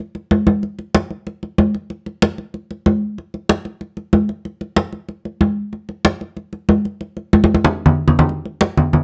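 Close, detailed microphones capture this short cut from a longer jazz piece, set in a room with a light touch of reverb. The only instrument is a set of acoustic congas, medium-tuned and ringing, heard close, dry and up front. The tempo is a brisk 188 BPM in 4/4 with a straight feel, giving the music a lively, sunny mood. The congas play from the start until 9.0 seconds, carrying the whole piece on their own. A drum fill runs from 7.3 to 8.3 seconds, marking the end of the opening section before the cut finishes.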